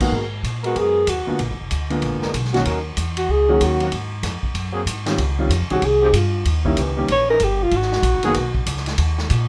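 A swinging 190 BPM 4/4 groove drives this sultry big band jazz fragment in G# minor, anchored by a woody, up-front pizzicato upright bass and a distant, roomy drum kit with dark cymbals and a boomy kick. A mellow alto saxophone enters with the solo melody at 0.7 seconds, its vibrato and scooped notes floating over soft-attack trombone section chords and a clear grand piano accompaniment with audible action noise. The harmony moves from G#m9 through A#7b9 and C#maj9#11 back to G#m9, set in a moderate club reverb.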